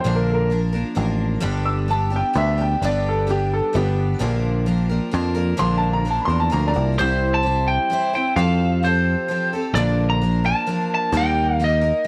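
Nostalgic and warm, this short cut from a longer folk rock and heartland rock piece moves at 130 BPM in 3/4 with a straight feel. A woody upright piano carries the opening, taking a solo from 0.0 to 7.0 seconds over chords that move from Bb to G and back to Bb. Beneath it, a bright, shimmering twelve-string acoustic guitar plays picked accompaniment with an octave-doubled, full-bodied jumbo tone, fresh strings and audible finger squeak. A dark, round picked electric bass sits up front and direct throughout. At 7.0 seconds the piano gives way, and a slightly broken-up, twangy, compressed lead guitar takes the melody over C, Fadd9, Bb and Eb. Light reverb and small room ambience give the whole an intimate setting.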